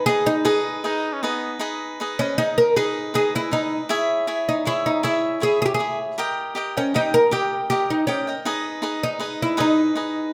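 Mexican folk in a mariachi vein, this proud, romantic fragment of a longer piece moves in a brisk 3/4 at 158 BPM in G# harmonic minor, its chords shifting from G#m through C#m and D# back to G#m. A woody, plectrum-plucked oud with double strings carries the melody up front while a crisp, picked cavaquinho supplies bright accompaniment throughout. A clear trumpet with light vibrato adds a brief classical-style second line from 0.8 to 1.6 s, all set in a moderate recital hall reverb captured by close, detailed microphones.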